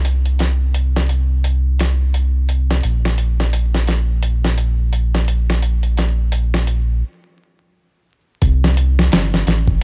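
Brooding and cinematic, this trip hop fragment from a longer piece moves at 86 BPM in 4/4 with a swung sixteenth-note feel, set against a bed of vinyl crackle. A deep, dark analog bass with a round, detuned tone sits up front in the low register. Beside it, a gritty, compressed sampler-style drum kit of thumpy kick, medium-tuned snare and hi-hat has a tape-warm character and high-pass filtering on every drum. The groove breaks into a stop at 7.0 s before moving into a new section at 8.4 s.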